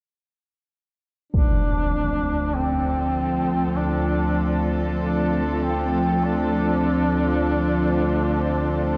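Dark ambient drone with an ominous, cavernous mood, heard here as a fragment cut from a longer piece. At 1.3 s a huge, shadowy impact, muffled by a low-pass filter, opens the passage as a duduk and a cello section enter together. The duduk carries a folk-style solo melody with vibrato and scooped notes, its warm tone distant and roomy yet up front, with a delay trailing its phrases. Beneath it the bowed cellos hold sustained chords played sul tasto with light vibrato, intimate and close, while from 1.8 s an evolving analog drone of sawtooth, pulse and triangle waves, shaped by pulse-width and ring modulation, arrives on a slow attack with chorus. A very quiet, bubbling texture of resonant random filter steps, with chorus and its own reverb, sits in the background, and the whole mix is bathed in a long cathedral reverb.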